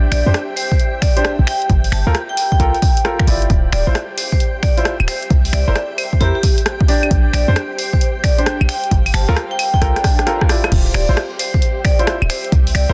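UK garage in a two-step swing at 133 BPM in D minor, this late-night, soulful snippet sets ringing hard-mallet vibraphone melody and worn, echoed baby grand piano stabs over a tight, punchy 808-style bass, a tape-warm analog kick and drum machine of claves, snaps, hi-hat, rim clicks and crash, while a silky phased string machine and an ethereal, pumping airy pad sit in the background through Bb69, Gm9, Dm9 and C chords, with a drum fill at 9.8 to 10.7 seconds and a background electronic swell from 10.0 to 10.7 seconds in a dry, dense master.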